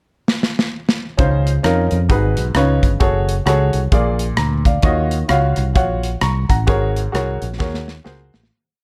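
A punchy modern drum kit opens this short, reverent uptempo gospel piece at 131 BPM with a swung fill from 0.3 s, then drives a two-beat praise groove of hi-hat, kick, rim click and medium-tuned snare, closing on another fill as the track fades out from 6.7 s. At 1.2 s a round, dark fingered electric bass enters, walking and running with slides and chromatic approach notes, beside a clear baby grand piano playing close-voiced quarter-note chords with short fills over soulful changes from Dbmaj9 through Ebm9 to a closing Ab9sus4. The dry, warm production keeps every part up front.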